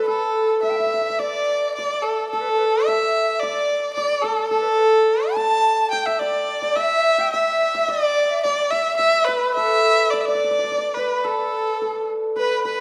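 A warm, bowed erhu leads up front with vibrato and portamento, its focused, smooth-topped line carrying a festive, graceful melody in the A shang mode at 107 BPM in 2/4, though the feel stays rubato. With it a bright large dizi adds a very quiet, airy second line with a buzzing membrane and crisp attack, while a hammered dulcimer rings and shimmers alongside, all three playing throughout this 12.8-second passage cut from a longer piece. The recital hall reverb gives the Chinese chamber ensemble a wet, resonant space, with a new section arriving at 1.2 seconds and another at 10.1 seconds.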